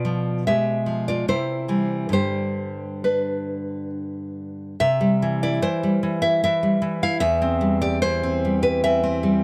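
Passionate and intimate, this short excerpt from a romantic piece for solo classical guitar moves in a flexible, rubato 3/4. A single nylon-string guitar, bright and fingerpicked, sits up front and spans E2 to F5. It opens on a diminished chord that settles to C by 1.3 seconds, then G, with a new section beginning at 4.8 seconds. Light reverb and a dark, warm production frame the playing.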